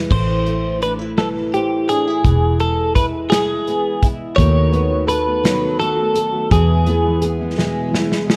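Six-eight pop ballad at 56 BPM in 6/8, aching and dramatic, moving through Am, E, B7/D# and E. A double-tracked flamenco guitar with audible finger squeak and a dark, round, foam-muted electric bass lay down the accompaniment, while an up-front, twangy, clean electric guitar carries the melody through analog chorus over an airy country drum kit with a punchy kick. A full-bodied fingerpicked steel-string acoustic guitar joins with tape-echoed arpeggios at 4.4 s, a drum fill arrives at 7.6 s, and the whole passage sits in a small room with light reverb and the warble of worn cassette tape.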